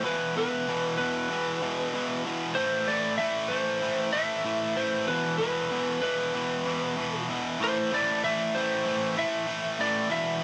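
Rock in A minor at 96 BPM, this aggressive, menacing excerpt sets a double-tracked, high-gain distorted guitar riff up front in the low register, cycling between E5 and Am chords across its 10.4 seconds. Above it, a lightly driven lead guitar with a twangy, slightly broken-up, compressed tone picks out a melody between B4 and E5. Light reverb places both guitars in a modest space.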